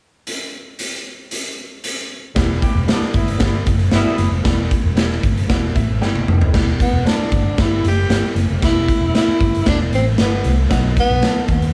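Driving and urgent, this uptempo 1960s-style soul cut in E minor moves at 115 BPM in a straight 4/4, opening with a raw, gritty drum kit alone in a pumping stone room before a dark, foam-muted electric bass and a clear, worn grand piano join at 2.4 seconds over an E minor chord. A mellow vintage horn section adds a brief second line with light vibrato, and after a piano fill and a drum fill, a breathy, whispered tenor saxophone takes the melody at 6.8 seconds with scooped notes, plate reverb and tape echo, as the harmony shifts to B near the end of this fragment of a longer piece. The sound sits in light reverb, with the punchy, saturated drums and the intimate saxophone placed up front.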